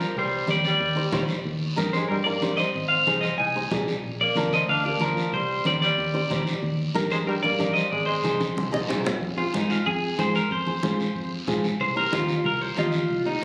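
Captured on a phone in the room, this cumbia excerpt has a wet, compressed club ambience, giving it a live, danceable drive. Up front, a clean electric guitar carries the melody with a twangy, scooped tone and a touch of spring reverb, while a roomy, distant tenor saxophone with vibrato plays a punchy second line until 8.7 s. A fingerpicked flamenco guitar fills in the accompaniment, and a round, dark fingered electric bass anchors the low end. Raspy guiro keeps the groove moving alongside thick-skinned, medium-tuned congas that sit in the background. After a short fill at 8.4 s, the electric guitar takes a solo from 9.2 s as the harmony settles onto minor chords.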